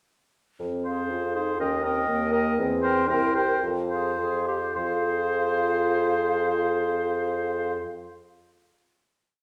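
A dark French horn and a mellow bassoon open this stormy, restless classical-period movement for wind quintet at 0.6 s, the bassoon holding sustained low notes on the beats. A hollow, airy flute carries the melody with vibrato, a clear oboe sits up front on a second line, and a distant clarinet adds sustained chords in the background. The short theme slows from 2.1 s and settles into a final chord at 4.8 s, all heard from further back in a reverberant recital hall.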